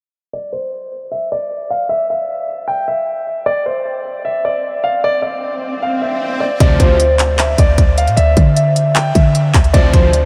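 Soaked in a huge, dreamy reverb, this melancholic, dark trap excerpt at 153 BPM in a half-time feel opens with a mellow, vintage grand piano melody carried through a filter sweep and analog delay, joined by an electronic swell at 4.6 s, before a hollow, woody clarinet-like synth lead, fat detuned polysynth stabs with lush chorus, a deep, boomy 808-style bass and an up-front trap kit of hard-clipped kick, crisp hi-hats and handclaps all arrive at 6.6 s over Dm7 and Dsus2 chords in D minor.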